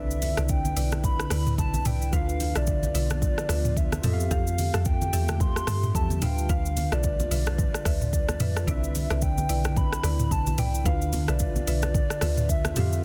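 A dry, dense and heavily limited modern mix carries this late-night amapiano excerpt, cut from a longer piece and moving at 110 BPM in 4/4 with a 16th-note swing in D dorian. Up front, an electronic afro-pop kit sets a deep kick against metallic hi-hats, rim clicks, shaker and toms, while a deep, round log drum bass with a dark, fast-decaying FM attack anchors the low end. A hollow, woody clarinet-like synth lead sings the melody from D5 to C6 with soft vibrato, chorus and tape echo. Beneath it, a worn, slightly out-of-tune tine electric piano plays accompaniment as through built-in speakers, and a mallet-like FM pluck sits in the background with chorus and tape echo on its stabs. A very quiet, ethereal pad sustains chords with slow attack and ensemble chorus from 0.2 seconds, joined by faint, thin-skinned congas struck with hard hands, as the harmony circles through Cmaj9, Dm69 and Fmaj9.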